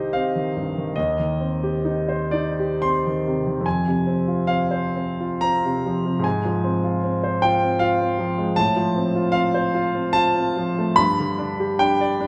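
A warm concert grand piano carries this romantic classical nocturne alone, sitting up front with a deep bass, an open tone and a long sustain that lets each chord ring. The mood is tender and serene, moving in a gentle triple metre with a flexible rubato feel that lets the phrases breathe. The harmony moves from C minor through F minor to F major and arrives on G by 11.0 seconds, the chords unfolding across a span from low C2 up to C6. A wet recital hall reverb surrounds the instrument, with a decay of about 1.4 seconds. This brief 12.3-second passage is taken from a longer piece.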